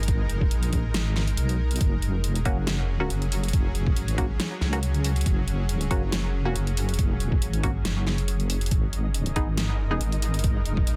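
Deep dubstep at 139 BPM in a swung half-time 4/4, dark and meditative, this cut from a longer piece rides an up-front, deep wobbling sawtooth bass with chorus over a gritty, thumpy pitched-down kick and an overdriven electronic kit with a huge snare and bright hats, while a tense, nasal bowed-like drone sustains chords from G#m to F#5 and G#5, muted filtered dub chord stabs with chorus and dub echo arrive at 2.5 seconds, and a flickering grainy texture surfaces in the background at 8.9 seconds, all within a dense, heavily limited digital ambience.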